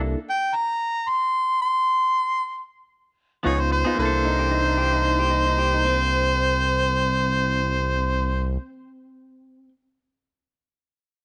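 Laid-back, swaggering swung blues cut from a longer piece, where an overdriven, jazz-style harmonica with light vibrato and scooped notes carries the solo up front over a stop-time opening until the band drops in around 3.4 seconds: a smooth, mellow synth bass up front, a reedy electric piano with fast tremolo, and bright, twangy clean guitar stabs in the background, joined at 4.2 seconds by a slightly broken-up second guitar line through a small old amp, all set in a light reverb.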